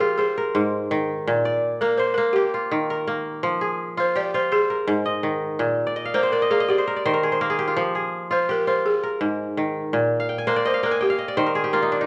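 West African traditional string and xylophone music in a reflective, hypnotic 12/8 at 111 BPM, this excerpt from a longer piece pairs an up-front, bright, fingerpicked kora ringing out arpeggios across a broad range, with fills at 5.9 and 10.2 seconds, against a woody, buzzing balafon struck with rubber mallets carrying the melody between G4 and D5, all set in a moderate recital-hall reverb over chords moving through Ab, Bb, Eb and Fm.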